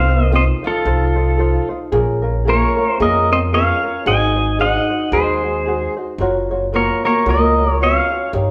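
Recorded live in one room and bathed in wet large-studio reverb, this sunny, relaxed Hawaiian excerpt swings at 112 BPM in 4/4 over F7/C, Bbm7, Ab7 and Gbmaj7: an up-front, twangy, compressed electric pedal steel carries the melody with fingerpicks, slide and volume swells, a boxy fingerpicked acoustic archtop adds a second line with audible finger squeak, a mellow thumb-plucked ukulele plucks light accompaniment, and an up-front woody upright bass on steel strings plays pizzicato underneath.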